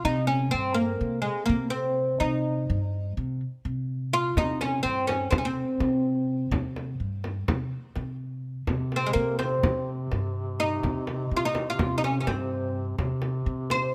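Turkish makam ensemble in C makam kurdi, a melancholic, longing excerpt in a straight 9/8 at 250 BPM counted in eighths, led by a plectrum-plucked, fretless oud with double strings and a woody tone carrying the melody up front over a dark, thumpy pizzicato upright bass on gut strings. A deep, large frame drum joins at 4.4 seconds, and at 8.7 seconds the piece moves into a new section where a mellow duduk sustains a soft-attack drone on C3 with vibrato and scooped, folk-style notes. The close, detailed recording carries little reverb, keeping the oud, bass and drum intimate and present.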